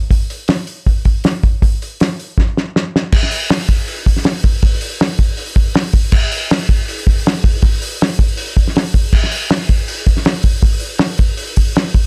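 A straight 4/4 rock beat drives this raw, swaggering excerpt at 160 BPM, carried entirely by a cloth-damped drum kit that thuds through from 0.1 to 12.0 seconds. The kit sounds acoustic and dry, with a fat snare, a tight kick, dark cymbals and a rolled-off top end that keeps the hi-hat and crash smooth rather than bright. A drum fill from 2.4 to 3.1 seconds marks the move out of the short opening section into the longer one that carries on to the cut. The drums sit up front in the mix, and a light reverb gives the room a touch of space. The result is a muffled, warm groove with a confident swagger.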